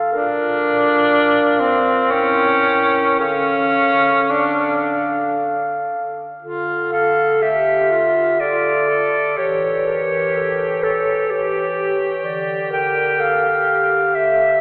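An up-front, clear clarinet carries the melody of this solemn, elegiac classical fragment for single-reed quartet, cut from a longer piece and moving in a slow, rubato 3/4 at 54-64 BPM in D minor. A mellow clarinet sings a second line beneath it, while a clear-toned tenor saxophone with light vibrato and a smooth top shapes the accompaniment, and a dark bass clarinet anchors the low register, all in a classical style. The harmony moves from Bb through A7b9 to Dm, with a new section beginning around 6.4 s that returns to Dm at 12.2 s. The quartet sounds heard from further back in a wet church reverb, filtered through a thin telephone-like sound.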